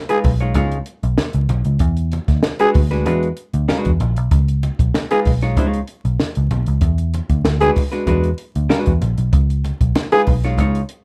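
Energetic and funky, this short funk excerpt moves at 96 BPM in a straight 4/4, centred on Db mixolydian and alternating between Db9 and E9 chords. A growling trombone carries the second line up front, its raspy, close-miked tone sitting on Ab4 with vibrato and scooped notes in a jazz style. Beneath it, a vintage hollow-body jazz guitar plays clean, compressed, picked accompaniment, while a foam-muted picked electric bass gives a round, punchy low end between Bb1 and E2. A compact cocktail drum kit with a high-tuned snare, punchy kick, hi-hat and a rolled-off top drives the groove, and low-tuned congas ring with hard hands in the background. Light reverb and vinyl crackle give the whole thing the feel of a rough home demo. All parts enter in the opening moments; the trombone drops out at about 10.2 seconds, the other parts follow by about 10.8 seconds, and the drums carry on to about 11.0 seconds.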